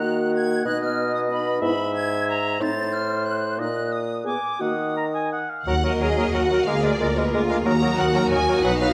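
A dark, distant French horn section holds sustained chords from the opening of this stormy, urgent orchestral passage, cut from a longer fast romantic movement in E-flat minor at 182 BPM in triple metre, played with rubato and a dramatic sweep. Beneath the horns, an up-front solo bassoon with a smooth top carries the accompaniment. Above them, a roomy, warm solo oboe and an airy, tongued small flute group share a second line. At 5.7 seconds the symphonic violin section enters with the melody, played with a soft attack and lush, expressive vibrato, joined by a clear, focused double bass section on the bass. A rich chamber violin section and a close viola section with portamento fill in from the background, and a bright cello section adds a further bass line from 6.0 seconds. The harmony circles restlessly around E-flat minor, and a moderate scoring-stage reverb gives the orchestra a sense of space.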